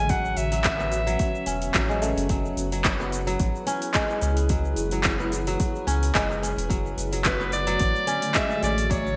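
A bright, classical-style solo clarinet carries the melody up front in this earthy, meditative organic downtempo excerpt, playing for the first 2.0 seconds and returning at 7.3 seconds, with digital delay on its line. Beneath it, a crisp, ringing fingerpicked kora spins delayed arpeggios while a cloudy, evolving granular pad holds mellow sustained chords in the background, and a round, dark analog bass pulses with sidechain pumping. Overdriven deep house drums sit forward with handclaps, metallic hats, shaker and gated reverb over a deep electronic kick, all set in a lush hall with bright 1980s-style digital production.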